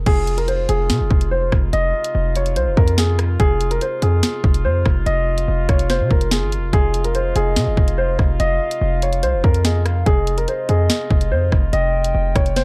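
A punchy, heavy 808-style bass anchors this tense, dark drill excerpt at 144 BPM with a half-time feel in F minor, alongside a hard-clipped drill kit with a sharp snare and bright hats, a mellow concert grand piano melody trailed by digital delay, soft-edged classical brass chords held low beneath, and a hollow, woody synth lead with chorus and vibrato that slips in quietly at 6.7 seconds, all in a close, dry production.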